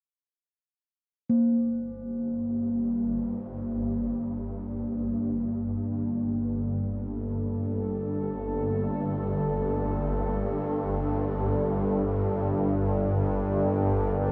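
Steeped in a huge, wet reverb and the warbling pitch drift of worn old cassette tape, this dark ambient drone excerpt feels desolate and shadowy. A pure, ringing quartz singing bowl sounds close and dry from 1.3 s with slow beating. A tense, granular swarming drone fades in up front at 1.9 s. A deep, mellow pad of detuned sustained chords with chorus joins at 3.5 s, adding a moody weight alongside the bowl's meditative tone.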